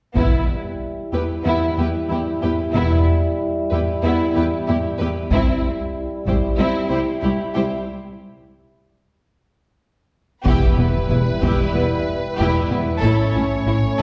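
Heard from further back in a wet scoring-stage room, this cut from an epic, heroic orchestral film cue sets lush, vibrato-rich violins carrying the melody and a second line over smooth violas, sustained French horn chords in a classical style, and even, bowed cellos anchoring the bass. A rich, distant double bass section plays alongside them, while a compressed, saturated taiko ensemble struck with heavy sticks punctuates the chord changes between E minor and C. After a break at 7.9 seconds, the music turns to a build-up at 10.5 seconds, where the double basses and taiko return and a huge, bright impact sounds in the background from 10.6 seconds.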